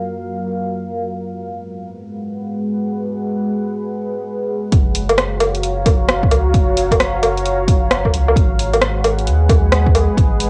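A moody, detuned sawtooth pad opens this future garage excerpt alone, its slow-attack chords drifting between Gbmaj7 and Abm7 with chorus, built-in reverb, sidechain pumping and a cassette-tape softness that sets a rainy, wistful tone at 132 BPM in a swung 4/4. At 4.7 seconds the groove arrives: a round, soft dub sub bass with a fast attack pumps beneath the pad, while an up-front deep house kit of hi-hat, rim click and woodblock brings overdriven grit and a small-room sheen. A punchy, layered electronic kick joins at the same moment and drops out at 10.3 seconds, just before the others finish. The mellow pad stays prominent throughout, its sub octave adding depth. The whole piece sounds like a home cassette recording, with a dulled top end and a hazy, intimate character.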